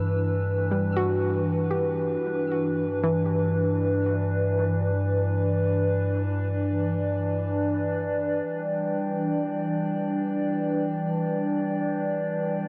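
Soaked in a huge, wet reverb with a long tail, this serene, peaceful ambient passage, cut from a longer piece, floats on a warbly, nostalgic, lo-fi pad that sits up front, colored by chorus and phaser as it sustains chords from Em7/G to G. Beneath it, a deep, round sub bass holds a low G, while a soft, dark pluck with chorus and delay spins gentle arpeggios until 7.2 seconds. At 8.5 seconds the bass has dropped away, and a glassy, ethereal glass harmonica enters as a pure, smooth texture over the G chord.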